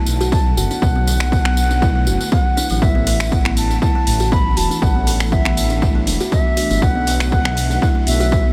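A bright, reedy baroque flute carries the melody with a crisp attack and straight tone between E5 and B5, its phrases trailed by delay in this hypnotic, spiritual afro house excerpt at 120 BPM in B minor. Beneath it, an ethereal, airy pad holds very quiet, mellow chords with a slow attack and ensemble chorus, moving from Bm7 to Asus4 and back to Bm7. A dark, detuned saw bass rumbles low with sidechain pumping, while a woody, hollow kalimba plucks short arpeggios that also pump and echo through delay. A punchy, overdriven electronic kick enters at 0.3 seconds as the loudest part, with a jingly, close tambourine alongside and an afro-pop kit adding finger snaps and metallic hi-hats from 1.2 seconds, all over a light 16th-note swing. A huge ambient reverb soaks the mix in a dreamy haze.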